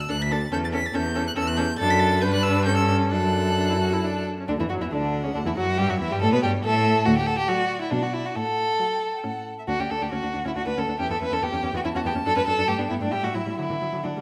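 A quick, cheerful and graceful classical-period movement for string quartet in D major and 3/4, flowing with rubato at roughly 127-146 BPM, where a warm, focused first violin sings the melody up to B6 over a rich, up-front second violin line, a clear, close viola accompaniment with an airy bow, and an intense, rich cello bass, all four played with vibrato in a recital hall's wet reverb, cut from a longer piece.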